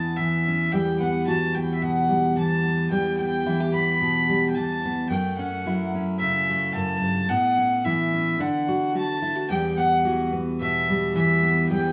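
Set in a studio space with light reverb, this reflective, wistful folk piece in E dorian moves at 109 BPM, with a nasal, earthy bowed fiddle carrying the melody up front over the dark, full-bodied fingerpicked chords of a steel-string acoustic guitar.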